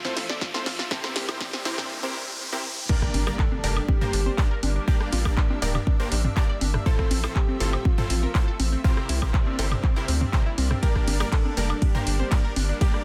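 Driving and expansive, this progressive house passage at 121 BPM in G dorian moves through a short build-up, where a drum fill and a background riser climb over Fmaj7 and C7 chords, into a drop at 2.9 s marked by an impact and cycling through Gm, Fmaj7 and C7. An up-front punchy kick hits beneath a house kit with a punchy snare, bright hats, claps, ride, crash and woodblock, a deep, saturated sine sub bass pumps alongside it, and a dry analog drum machine adds congas, rim clicks and toms in the background. Over a very quiet, lush detuned pad, a tight sequenced synth arpeggiates with chorus and delay, bright supersaw stabs cut through, and from 2.9 s a soft, round octave-layered lead with vibrato sings a narrow melody, all in a dense, heavily limited and nearly reverb-free mix.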